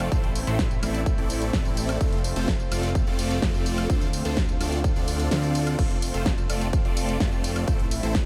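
A mix with light reverb opens this short excerpt of uplifting, anthemic festival progressive house in a straight 4/4 feel. A punchy electronic kick sits up front, joined by a big-room dance drum kit with a huge snare, crash and ride cymbals, hi-hat, tambourine and woodblock, all in a small room reverb. The supersaw chords carry the riff with a huge, detuned sawtooth sound, sharpened by phaser and analog delay, while a lush, airy unison pad holds sustained chords beneath them with chorus and a noise layer. A fat, saturated analog bass anchors the low end with an evolving filter sweep, and the pad, supersaws and bass all pump against the sidechain. The harmony moves through Am, F, Dm7 and F before returning to Am, and the kick drops out briefly from 5.3 to 5.8 seconds before punching back in.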